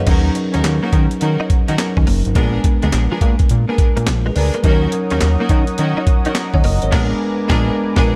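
A gritty, compressed breakbeat kit with a thumpy kick, snare, hi-hat, handclaps and crash drives a swung sixteenth-note groove up front, anchored by a fat, detuned analog bass in this punchy, confident new jack swing excerpt. A bell-like tine electric piano carries the accompaniment, a clean, direct electric guitar plays a picked riff with ensemble chorus in the background until 6.8 seconds, and a lush, bowed string section adds focused stabs. A mellow analog pad with a soft attack enters at 4.6 seconds, and the band hits an accent from 6.9 seconds as the harmony moves back to Bb7b9.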